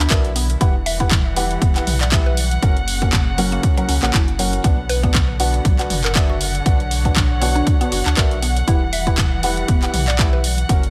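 Afro house at 119 BPM in B harmonic minor, earthy and hypnotic, with a swung 16th feel: a punchy, overdriven electronic kick sits up front beside a house kit of handclaps, bright hats and toms, while a round sine sub bass, soft felt-muted upright piano stabs with audible action noise and digital delay, a woody FM mallet-like pluck arpeggiating in the background through chorus, phaser and delay, and veiled con sordino chamber strings holding sustained chords all pump with sidechain over a Bm, Emadd9 and F# progression in this roughly 10.9-second excerpt cut from a longer piece.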